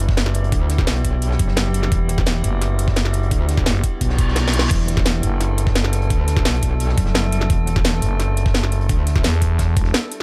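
A thick, growling FM bass drives this dark, aggressive technical drum and bass clip, joined from 0.5 seconds by a metallic wobble bass with chorus and tube saturation. An up-front drum and bass kit with cracking snare and metallic hats sits over a knocking, tape-warm electronic kick, while a very quiet, gritty acoustic breakbeat kit with a high-tuned snare adds crunch underneath. An eerie, inharmonic FM drone with chorus and built-in reverb pumps with sidechain compression, and a reverse cymbal at 4.1 seconds leads into a brief drum fill, all in a dry, close mix.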